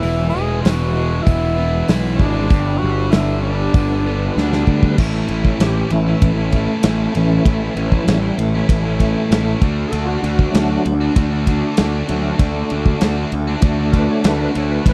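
A dry, close recording in a 1970s studio manner gives this driving, swaggering classic rock excerpt a tight, present sound at 97 BPM in a straight 4/4, centred on A mixolydian. A raspy, gritty tenor saxophone with vibrato and tape echo opens with a short melody that ends at 4.6 seconds, while a full tonewheel organ, lightly overdriven through a slow rotary speaker with chorus vibrato, holds sustained chords in the background. Two picked electric guitars, one bright and overdriven, the other distorted and set further back, play riffs throughout. Underneath, a fuzzy, punchy picked bass sits up front beside a big acoustic rock kit with a punchy kick, medium-tuned snare, hi-hat, ride and crash. A drum fill at 4.4 seconds leads into the second section at 5.0 seconds, where the organ takes a solo over chords moving from A to D through to the close at 14.9 seconds.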